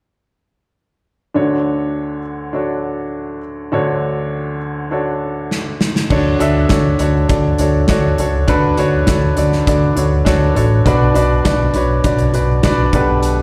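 A straight 4/4 pulse at 101 BPM carries this anthemic, uplifting piano-driven pop excerpt in D major, where a woody, up-front upright piano with long sustain and slapback echo opens alone on a Dmaj7 chord at 1.3 seconds, an acoustic drum kit with punchy kick, medium-tuned snare, hi-hat, crash and pumping room sound enters with a fill at 5.5 seconds, and a dark, round, foam-muted fingered electric bass joins at 6.1 seconds before the harmony turns to B minor, all heard as a live gig through the venue's sound system in recital-hall reverb.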